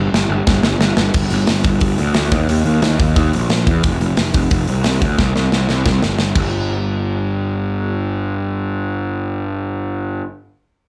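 A growly, fuzz-drenched picked electric bass sits up front in this rowdy, rebellious punk rock excerpt at 178 BPM, driven by a tight metal drum kit with bright cymbals, a medium-tuned snare and a tight kick that opens on a fill, fires off another at 5.2 seconds and drops out at 6.4 seconds, leaving the overdriven bass to carry on alone, all heard as a live club gig through the venue's PA.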